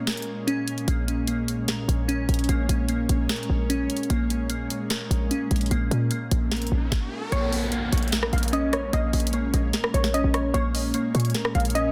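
A half-time trap groove anchors this brooding, menacing hip hop excerpt, its electronic kit of knocking kick, sharp snare, rim click and bright hats sitting up front, joined at 0.9 seconds by a punchy, tight 808-style bass with a noise layer and fast, decaying notes. Above it, glassy digital keys spin chorused, delayed arpeggios with a filter sweep, while an ethereal, airy pad holds detuned sustained chords in its own ensemble chorus and reverb over a Bbm7 harmony. A riser and downlifter lead into a brief stop, and at 7.3 seconds a warbling, lo-fi, wave-folded pluck enters as a second line, all wrapped in light digital ambience and a dense, heavily limited modern master.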